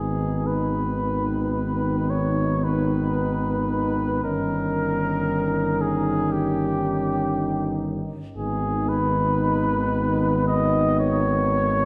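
Classical, hymn-like brass band music in G# minor and free time, with an elegiac, melancholic mood, moving from G#m through D#7/G and back to G#m across this short excerpt. A clear cornet carries the melody up front with light vibrato, while a mellow flugelhorn adds a second line in the background. A trombone that sounds distant and roomy and a warm euphonium fill in the accompaniment, and a soft-attacked tuba anchors the bass up front, heard from further back in a concert hall with lingering reverb.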